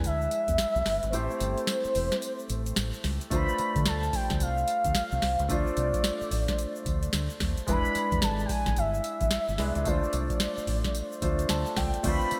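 A mellow, horn-like synth lead with soft attack, vibrato and portamento carries the melody over a booming analog drum machine with deep kick and crisp snare, a round, dark fingered bass, an intimate concert grand piano that adds a fill at 11.2 seconds, and a very quiet grainy egg shaker. This slick, confident new jack swing excerpt runs at 110 BPM in D dorian, moving from E7 through Am7 and Dm7, then back to E7 and Dm7, with a break from 1.1 to 3.3 seconds, all set in a lush hall reverb with a bright 1980s-style digital sheen.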